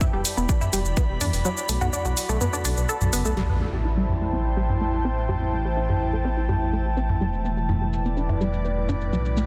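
Melodic techno in A dorian at 125 BPM with a driving, dark mood, cut from a longer piece: a punchy, up-front electronic kick plays only until 1.1 seconds, while a tape-warm house kit of hi-hat, shaker and toms runs low-pass filtered throughout. Beneath, a deep, rumbling detuned saw bass pumps against a tight, wave-folded sequenced synth arpeggio with chorus, phaser and dub echo, and an airy, breathy pad drifts over chords moving from Em7 through Bm7 and Am7 back to Em7. An electronic impact lands at 3.4 seconds as a filter sweep begins on the drums, and a vintage, warbling analog drone enters softly at 4.7 seconds, all set in a lush hall reverb with a dense, heavily limited master.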